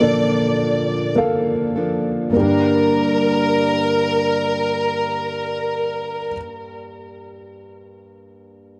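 In a slow, straight 4/4 at 51 BPM that slows down over the first 2.3 seconds, this emotional, longing pop fragment in G minor moves from Bbmaj7 to Gm at 2.3 seconds. A smooth, clear studio violin section carries the melody with light vibrato and tape echo, and a full-bodied, fingerpicked jumbo steel-string acoustic guitar plays arpeggios, also with tape echo, until both stop at about 6.3 seconds. A woody, intimate upright piano with audible action noise accompanies throughout and plays alone until 8.8 seconds, all captured in a dry, close 1970s-style studio sound.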